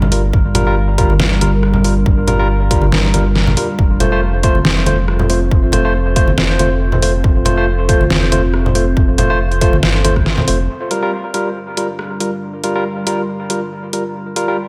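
Deep dubstep with a meditative, cavernous mood, moving in a half-time feel with a light swing and drifting from Gm7 to F before returning to Gm7. A dark, moody pad holds sustained chords throughout, its slow-attack sawtooth and wave-folded tones thickened with chorus and its own reverb. A barky, clean tine electric piano sits up front with dub-echoed stabs, while a round, soft sub bass with tube saturation anchors the low end until about 10.7 seconds. A punchy, layered electronic kick and an up-front dubstep kit with a deep snare, rim clicks and hi-hat drive the groove, with ringing hand-struck congas in the background, and the kick, congas and bass drop out near 10.5 seconds to leave pad, keys and kit for the final stretch. The whole mix is dreamy and soaked in a lush hall reverb, giving this excerpt of a longer piece a spacious, hazy depth.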